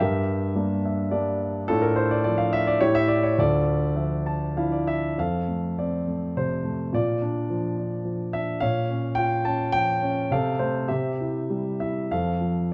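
Moody and bittersweet, this short passage cut from a longer piece is lyrical classical writing for solo piano in 3/4, moving with a rubato feel at roughly 96-109 BPM. A dark grand piano carries everything alone from start to finish, spanning D2 to A5 with a mellow, up-front tone. It opens in D minor, passing through Gm, Dm/A and Dmadd9, with brief fills at 0.6 and 4.0 seconds. At 5.2 seconds the music turns to F major, where a shift from Bb to Bbm lends a shadowed, wistful color before it settles through C back onto F. A moderate recital hall reverb and a warm, dark production surround the instrument, tuned slightly low at A4 = 438 Hz.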